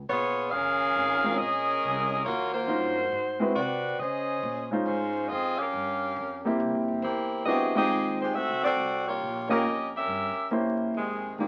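Big band swing jazz with a sultry, swinging mood, this short excerpt puts a warm, vibrato-rich saxophone section up front on the melody over a woody, dark pizzicato upright bass from the opening and an intimate concert grand piano with audible action noise entering at 1.2 seconds, all heard through a snug reverb and the crackle of a very old 78 rpm record.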